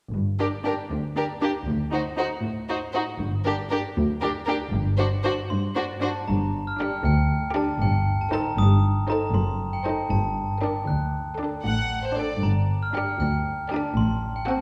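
Cinematic, playful film cue in G minor, sneaky and mischievous at 78 BPM in 6/8, where bowed cello and double bass sections lay a rich, lush low foundation from 0.1 seconds, warm vibrato violins carry the melody over a focused second violin line and expressive violas, and a metallic, bell-like glockenspiel with hard plastic mallets joins the melody at 5.5 seconds, all bathed in a wet concert hall reverb as the harmony moves through Gm, D7b9 and F#dim7.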